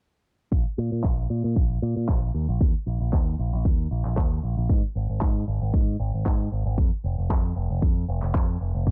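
Sleek and sensual, this nu-disco excerpt in a lightly swung 4/4 pairs a bright, punchy picked electric bass with an envelope filter and a layered, up-front electronic kick from 0.5 seconds, joined by airy, polished handclaps sitting low in the mix, all in a dry sound shaped by a low-pass filter sweep.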